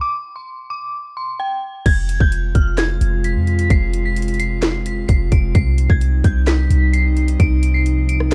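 A half-time trap beat at 130 BPM in 4/4 drops in at 1.9 seconds, with an electronic kit of hard-clipped kick, sharp snare, metallic hi-hats, handclaps, rim clicks and crash that carries a gritty 12-bit sampler edge. It sits up front beside a deep, boomy, clean sine 808 bass, after an opening break where an eerie, inharmonic FM bell plays the melody alone, detuned and mellow through chorus and phaser. From 2.2 seconds an airy, breathy pad of soft, detuned triangle and sawtooth tones with a noise layer holds slow-blooming chords under the bell as the harmony moves from F minor to C minor, keeping this short, hard-hitting hip hop cut dark and dry.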